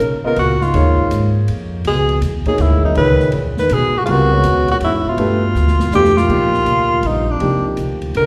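Modal jazz in a brisk 3/4 at 162 BPM with a 65% eighth-note swing, this short cut from a longer piece feels cool and intense, moving through suspended and minor eleventh chords before a drum fill at 5.6 seconds leads into a new section at 6.3 seconds. A clear, up-front tenor saxophone carries the melody with light vibrato and scooped notes, while a breathy, whispered trombone sits in the background on a second line, both touched by slapback echo. Underneath, a dark, mellow grand piano with slapback echo provides accompaniment, a woody pizzicato upright bass anchors the low end, and an airy, open drum kit with dark cymbals and a boomy kick keeps time. The whole band sits in a moderate club reverb that sounds like a live gig heard through the venue's PA.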